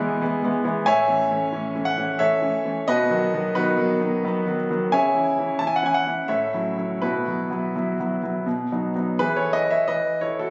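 A clear, intimate grand piano plays alone, up front with audible action noise, in a graceful, playful classical-period sonatina in E major and 3/4, moving with rubato at 82-91 BPM from E through A, B, C#m and F#m7/A to a Bsus4 that settles on B before a new section opens on E5 at 9.2 seconds, all heard through a phone recording in a club-like room with light reverb and muffled highs in this short cut from a longer piece.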